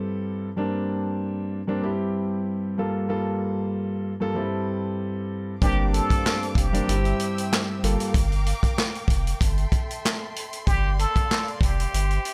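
Boom-bap hip-hop at 95 BPM with a lightly swung sixteenth-note feel, this gritty, reflective excerpt opens with a dark grand piano alone, its mellow, long-sustaining chords carrying a cassette-tape patina over a cycle that moves from Am7/G through Bbadd9/G and C/G to Gm7. At 5.6 seconds the full band arrives: a vintage acoustic drum kit up front with a punchy kick, medium-tuned snare, hi-hat and handclaps, all with a rolled-off top, alongside a round, sine-like sub bass sitting deep in the low register. A trumpet with a plunger mute takes the melody in a forceful, jazz-style solo, its wah-wah inflections and light vibrato set back in the room and trailed by delay. Behind it, a distant bowed string section holds soft-attacked chords with expressive vibrato and portamento. The piano drops out at 8.1 seconds, leaving drums, bass, trumpet and strings to carry the passage, all wrapped in a small room ambience.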